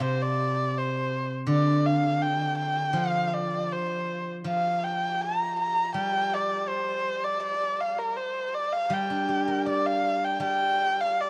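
Flowing freely in a rubato 2/4, this graceful, tender Chinese traditional chamber piece sets a single intimate erhu melody, bowed up front with an airy bow, soft attack, light vibrato and portamento, over the silvery, ringing accompaniment of a fingerpicked steel-string zither, both heard throughout this short excerpt within a dark, warm production touched by light reverb and vinyl crackle.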